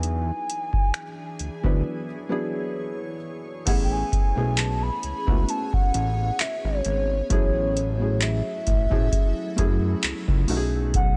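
A booming analog drum machine with a deep kick, metallic hi-hats, finger snaps, handclaps and crash cymbal sits up front in this romantic, smooth contemporary R&B excerpt, joined by a fat, saturated analog bass, a soft felt-muted upright piano, a hollow, woody clarinet-like synth lead carrying the melody with chorus, delay and vibrato, and an ethereal pad holding sustained chords through phaser, built-in reverb and sidechain pumping, over a lightly swung groove in a dry mix with a break from 1.9 to 3.7 seconds.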